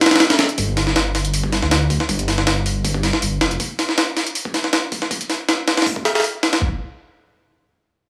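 Drum and bass with a jungle edge at 159 BPM, this frenetic, dark excerpt opens on a brief break where a very quiet, warbling, nostalgic tape-like pad holds an F7 chord until 0.5 seconds, while a gritty, pitched-up, sampler-style drum kit with a thumpy kick, high-tuned snare and overdriven, compressed sound sits up front through 6.7 seconds, joined from 0.6 seconds by a deep, rumbling, detuned saw bass whose beating tone sustains on G5 before dropping out at 3.6 seconds, all set in a digital studio ambience.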